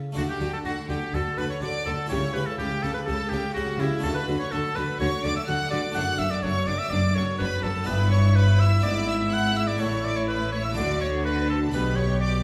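This lively, festive baroque-style concerto movement moves at 124 BPM in D major, with a close, clear oboe singing the solo melody alongside a rich, smooth upper violin section and a distant second violin line. A brilliant, plucked harpsichord and focused cello section open the fragment at 0.0 seconds, with the rest entering at 0.2 seconds: intense viola section harmony in the background and a deep double bass section with a smooth top. Everything rests in the wet, resonant reverb of a recital hall.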